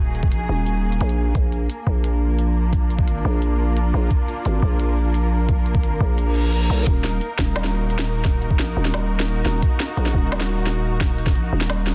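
A half-time drum and bass groove in 4/4 at 174 BPM carries this heavy, spacious piece in Eb harmonic minor, cut from a longer track. A gritty, thumpy electronic kick with overdrive anchors the beat, joined by an organic electronic kit of woody snare and crisp hi-hats with a tape-toned, produced character. Up front sits a growling, buzzy 808-style bass with a fast attack and decaying tail, moving between Ebm and Bb. Beneath it all, a distant, veiled string section plays muted, bowed chords with vibrato, pumping under sidechain. An electronic reverse cymbal rises at 6.3 seconds as the kick drops out at 6.5 seconds, and the groove lands back on Ebm at 6.9 seconds, all in a dry, dense, heavily limited modern master.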